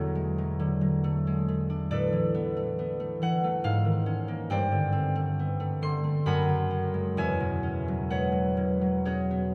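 In a rubato 3/4 that drifts between 58 and 71 BPM, this brief cut from a longer classical piece for solo concert harp unfolds with a wistful, gentle mood, tuned to A4 = 445 Hz. The bright, fingerpicked harp rings up front across a range from E2 to C6, moving from an opening Dmaj7/E through a chain of suspended chords (Asus24, G#sus24, Gsus24, F#sus24) to settle on E69 at 7.2 seconds. A wet cathedral reverb with a long 5.6-second decay, heard from further back in the room, wraps the 9.5-second passage in a spacious, hallowed halo.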